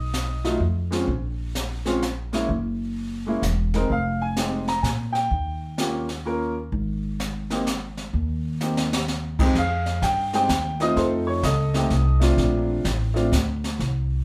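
Set in a reverberant live studio room, this sophisticated, playful swinging jazz waltz features a boxy, long-sustaining upright piano carrying the melody up front, a thumpy, gut-strung pizzicato upright bass, and an airy brushed drum kit with dark cymbals, a high-tuned snare and a boomy kick; the kit plays a short fill at 8.6 seconds before the music moves into a new section at 9.6 seconds, cut from a longer piece.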